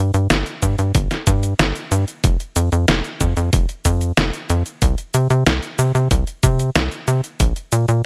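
A dry, close sound frames this moody, nocturnal synthwave cut from a longer piece, moving at 93 BPM in a straight 4/4. An up-front sequencer bass of sawtooth and square waves drives from the start with a tight, punchy, fast-attack filter pluck that decays, ranging from F1 to C3. From 0.1 seconds a detuned 8-bit drum machine adds sampler-style hi-hat, shaker and a fat, overdriven snare, and a layered, knocking electronic kick with its own grit enters at 0.6 seconds; both drum parts were re-recorded in a small room.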